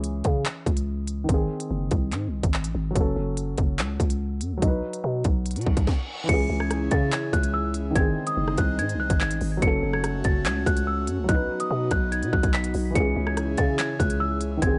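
Drill hip hop at 144 BPM with a half-time feel in C# minor, this ominous, dark fragment opens on a muffled, intimate baby grand piano with audible action noise, a growling, buzzy 808-style bass and an up-front, tape-warm drum kit of hard-clipped kick, sharp snare, crisp hats, claps, rim clicks and crash. At 5.6 s a reverse cymbal leads into 6.3 s, where a delicate, slightly out-of-tune celesta melody enters with filtering and digital delay over an airy, breathy, detuned pad with chorus. The mix is dry and close, and the cycle of C#m, G#, F#m and B chords repeats throughout.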